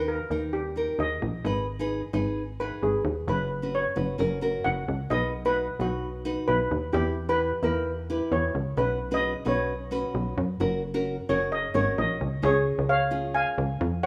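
A rough home demo with small-room reverb carries this festive, carefree calypso cut from a longer piece in B major at 131 BPM, where a shimmering, metallic and boxy steel pan struck with hard rubber sticks takes the lead solo until 12.4 seconds over a fingerpicked nylon-string guitar with fresh strings and a tight, punchy sequencer bass whose sawtooth and square-wave tones, ring modulation and plucky filter give it a driving, decaying bite, moving through chords like G#m, F#sus4 and Em before shifting to Db at 12.4 seconds.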